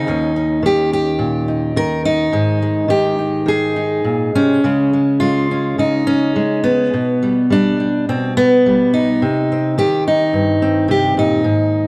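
Warm and pastoral, this folk fragment features a lone fingerpicked steel-string acoustic guitar, played with a rubato feel around 106 BPM in 4/4 and tuned to A4 = 442 Hz. Sitting up front across its 11.9 seconds, the guitar ranges from Eb2 to Bb4, moving through Eb7, Ab, Dbsus2, G/B and Cm, with an audible finger squeak. Light reverb and a dark, warm production shape the recording.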